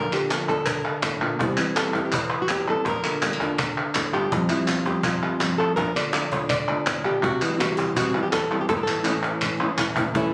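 Mournful yet fiery, this short flamenco excerpt moves in a straight 4/4 over a brooding progression that circles Bb and C, passes through Fadd9, and comes to rest on A. Up front, a fingerpicked flamenco guitar carries the melody in a warm acoustic tone. A second flamenco guitar sits in the background, thumb-plucked and dark, punctuating the harmony with stabs. Crisp palmas hand claps ring close and present, with a vintage, band-limited character. Beneath them a woody cajon with faint snares keeps time in a live-room sound, then plays a fill from 9.1 to 10.2 seconds. The whole take was captured on a phone in the room and given moderate studio reverb and compression.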